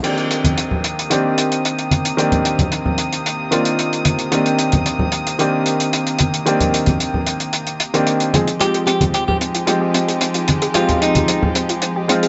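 A dry, intimate mix with light small-room reverb and a soft, dark top end frames this sleek, sensual nu-disco snippet in 4/4, moving from Cm7 to Fm9. A clear grand piano with tape echo carries the accompaniment up front, while gut-toned chamber strings hold bowed chords with light vibrato under a filter sweep, and a damped 70s kit with dusky cymbals sits beside low-tuned, thin-skinned congas played with soft hands. A very quiet, round analog pluck sounds its arpeggios at the start and returns at 8.6 seconds, when a twangy, compressed clean electric guitar, recorded direct and treated with tape echo, adds a short picked melody.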